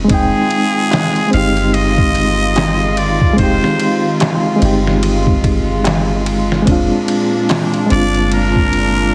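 A swung, gritty sampler-style trip hop beat of thumpy kick, snare, hi-hat and ride, with a distant metal-shell darbuka in the background, sets a brooding, dark mood as a soft, round 808-style bass and a reedy electric piano with fast tremolo and tape echo sit beneath a raspy, up-front straight-muted trumpet with scooped notes and light vibrato, while a nasal gut-string chamber section holds sustained chords over Fm7 moving to Bb7/F at 6.7 seconds and a very quiet detuned sawtooth drone with phaser enters at 2.7 seconds, in a heavily compressed, radio-like mix.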